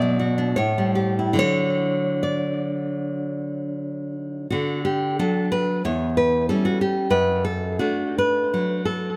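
Nostalgic and sunny, this short excerpt from a longer romantic piece for solo classical guitar unfolds in D major with a rubato feel between 72 and 96 BPM, as the up-front, fingerpicked nylon-string guitar rings with fresh strings and a touch of tape echo across its range from E2 to D5, moving from Bm through A7 to D and later reaching C#dim/E at 5.9 seconds before settling on D/F#, all captured by close, detailed microphones in light reverb.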